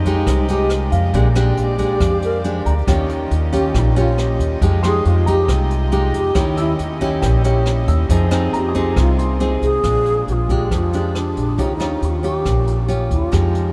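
A straight 4/4 bossa nova pulse at 138 BPM, set by a brushed drum kit with a boomy kick, rim clicks and hi-hat alongside a woody pizzicato upright bass up front, carries this melancholic, intimate excerpt, where a distant, breathy bass bansuri sings the tongued, vibrato-laden melody over a full-bodied fingerpicked nylon-string guitar, a very quiet piano with audible action noise until 10 seconds and soft, floating bowed strings until 9.8 seconds, all drifting through chords from Fm9 to Eb9 in a vast, echoing reverb.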